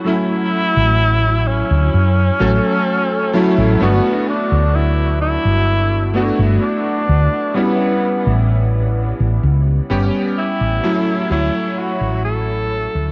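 A breathy, whispered tenor saxophone carries an intimate, jazz-styled melody with vibrato and tape echo over a clear, long-sustaining electric grand piano with ensemble chorus and a dark, round, woody fretless electric bass with subtle chorus, in this faded, woozy 64 BPM vaporwave excerpt in D major that moves from Dmaj9 through Gmaj7 and A9 before fading out from 8.8 seconds into a cassette-tape sound with light small-room reverb.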